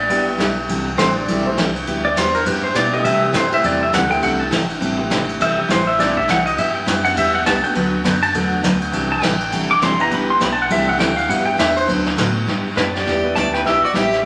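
Down-home and playful, this western swing country passage, taken from a longer piece, moves with a swung eighth-note feel. A clean, compressed electric pedal steel guitar carries the melody as a solo from the start through 12.5 seconds, its fingerpicked slide lines shaped by volume swells. Beneath it, a full-bodied dreadnought acoustic guitar picks out the accompaniment, while a woody upright piano with long sustain sits in the background. A vintage kit played with brushes keeps time with a punchy kick, medium-tuned snare and dark, rolled-off cymbals, held up front in a small-room sound, and a deep sine sub bass with an added octave anchors the low end. Near the close, at 12.8 seconds, a single earthy fiddle with an airy bow and light vibrato slips in with a second line, all set in a lush large-studio reverb.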